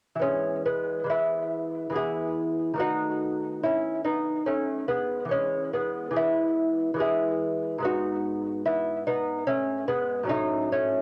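A home cassette recording lends this short passage a soft, slightly worn texture, set in a moderate studio reverb that gives the notes a gentle halo. It is a classical, baroque-style dance in triple metre, played with a rubato feel, and its mood is serene and radiant. A solo lute carries the whole piece from 0.2 to 11.0 seconds, sitting up front in the mix. Its gut strings sound delicate and fingerpicked, and the doubled courses, some strung in octaves, add a shimmering richness to the tone. The harmony moves from E through B7/D#, back to E, then to G#m7 before settling on F#m/A as the fragment breaks off, cut from a longer piece.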